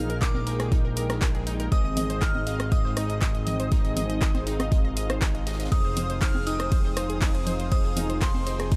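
Dreamy and emotional, this progressive house passage in straight 4/4 rests on an up-front, deep electronic kick, a fat, detuned sawtooth analog bass and a layered deep house kit of handclaps, hi-hat, ride cymbal and rim click. A very quiet acoustic snare and hi-hat from a loose indie kit sit beneath it, and congas sit in the background in a large room. Over a thick, slow-attack unison pad, a punchy unison pluck plays arpeggios and a retro, glossy chorused polysynth adds stabs, both with sidechain pumping and delay, while a crystalline FM bell carries the melody through chorus, phaser and delay, joined by a soft, airy lead with vibrato as a second line. At 7.9 seconds a reversed, swelling granular texture enters, as the chords move from Bb7sus4 to Ab and then Fm7.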